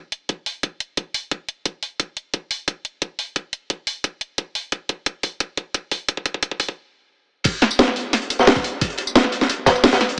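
A drum and bass drum kit opens this short cut from a longer piece, with crash cymbal, hi-hat, snare and tambourine driving a straight 176 BPM groove in 4/4, joined by a knocking, filtered electronic kick. The mood is dreamy and lush, carried by light reverb and a small room ambience that gives the whole a small-speaker character. The opening build-up features a drum fill from 2.0 to 6.8 seconds, then a stop before the drop at 7.5 seconds. The produced, layered kit has a cracking snare sitting up front, while the kick, also up front, sits at a lower level. At 7.4 seconds a crunchy breakbeat kit enters with a high-tuned snare and hats, dark, saturated and gritty with a rolled-off top, its room sound thinned by filtering.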